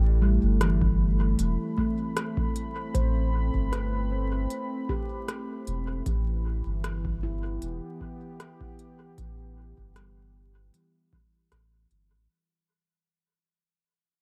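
Spacious and hazy, this slice of ambient dub in A minor moves at 77 BPM with a light swing, resting on a single Am9 chord and fading out across its 12.3 seconds. A smooth, detuned sawtooth pad with chorus holds sustained chords over a round, deep sub bass placed up front, while a ringing, meditative handpan played with soft fingertips spins mellow arpeggios through a low-pass filter and analog delay from 0.2 seconds. Crisp hi-hats and rim clicks from an organic electronic kit carry dub echo, an analog kick sits in the background from 0.8 seconds, and the echo-heavy mix is dusted with vinyl crackle.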